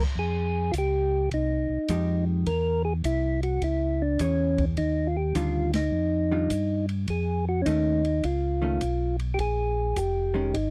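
A swung 104 BPM groove in 4/4 drives this bluesy, smoky soul jazz organ trio excerpt in F minor, with an open, airy drum kit of dark cymbals, medium-tuned snare and boomy kick entering at 0.2 seconds beneath a mellow, round tonewheel organ bass carrying chorus vibrato and slow rotary speaker. Up front, a percussive tonewheel organ with third harmonic percussion and slow rotary speaker carries the melody, while a dark, compressed hollow-body jazz guitar joins at 1.9 seconds with picked, clean accompaniment through chords like Fm9, Ebmaj9 and Faug7. A band accent lands at 5.6 seconds, all within a dry, close 1970s-style studio sound touched with light reverb.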